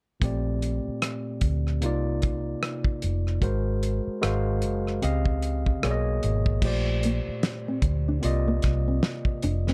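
Sensual and warm, this slow neo-soul R&B fragment from a longer piece moves at 75 BPM in Bb major with a swung sixteenth feel, as a lightly overdriven tine electric piano through a combo amp lays lush chords like Bbmaj13, Cm11 and Dbmaj9#11 over a round, foam-muted vintage fingered bass and a cloth-damped, thuddy drum kit with a fat snare, tight kick and dusky cymbals, all up front in a dry, dark mix, until a small, thumb-plucked nylon-string guitar adds a second line at 7.0 s.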